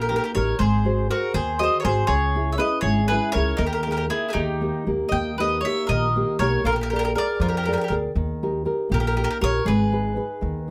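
A 6/8 pulse at 79 beats per minute, counted in dotted quarters, moves with a loose, rubato feel through this short Italian folk serenade of about 10.7 seconds, cut from a longer piece. The mood is romantic and wistful. Two picked, double-strung mandolins play throughout: the lead carries the melody up front with a bright, woody ring, while the second sits a little lower in the mix, tracing a supporting line beneath it. A fingerpicked nylon-string guitar, full-bodied and deep in its classical tone, provides close, up-front accompaniment, and a pizzicato upright bass on steel strings adds a thumpy low end. The harmony travels from D# through G#7, C#m and a D#sus4 before resolving to D#, then passes through A#7 back to D# and settles on G#m at 9.7 seconds. Close, detailed miking and a light reverb keep the sound intimate and clear.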